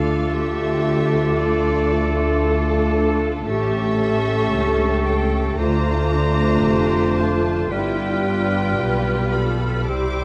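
A dark, warm production sits in a scoring-stage reverb of about 1.9 seconds, giving this slow romantic orchestral passage a soft, enveloping glow. At 57 BPM in 4/4, with a rubato feel and tuning at A4 = 436 Hz, the mood is tender and serene as the harmony moves from D minor through A7 and Dm7 to G7. A lush, focused symphonic violin section carries the bowed melody with vibrato, while a clear solo oboe, a dark but present clarinet, an airy, hollow flute section and a distant, even studio violin section weave second lines around it. A mellow solo bassoon and a smooth viola section provide accompaniment, and a concert harp adds ringing, fingerpicked arpeggios in the background. The double basses sit up front at the bottom of the texture, joined in the bass role by an expressive cello section, with every part sounding together for the full 10.2 seconds of this fragment from a longer piece.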